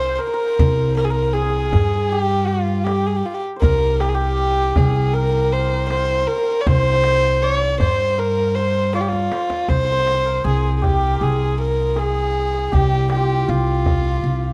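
A steady, straight 4/4 pulse at 79 BPM carries this Persian modal ensemble piece in the shur dastgah on C, cut from a longer work and steeped in longing and soulful feeling. Up front, a single intimate kamancheh sings the melody with light vibrato, soft attacks, portamento and an airy bowed tone. A shimmering, ringing santur traces a second line in the background. A woody pizzicato upright bass on steel strings holds the low end up front. A deep tombak sits further back in a small-room sound, and its fill from 8.9 to 9.7 seconds leads into a new section that runs to the end. Light reverb and a dark, warm production give the recording its character.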